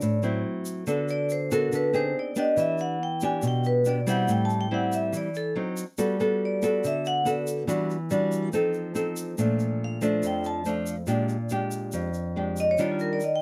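Light reverb surrounds this intimate, smooth bossa nova fragment, where a metallic, ringing vibraphone played with medium hard mallets carries the melody as a solo throughout, its slow motor vibrato sitting in a boxy small-room sound. Beneath it, an up-front, dark nylon-string guitar is fingerpicked with audible finger squeak, moving through colourful chords such as D13b9, G#maj7#11, Gmaj9 and Ebmaj9. A grainy, bright egg shaker, close and dry, sits quietly in the background.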